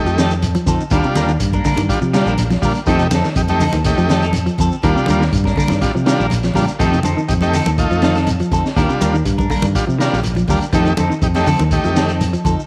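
Combo organ, semi-hollow guitar arpeggios with analog chorus and a round fingered bass open this driving, hypnotic afrobeat excerpt at 122 BPM in F mixolydian, joined at once by a crunchy, saturated breakbeat kit with a punchy kick and high-tuned snare, a grainy shekere, clean picked guitar stabs through a phaser and very quiet, dry congas, as the buzzy, heavily vibratoed organ rides an F7 to Ebmaj7 vamp in a small, lightly reverberant room.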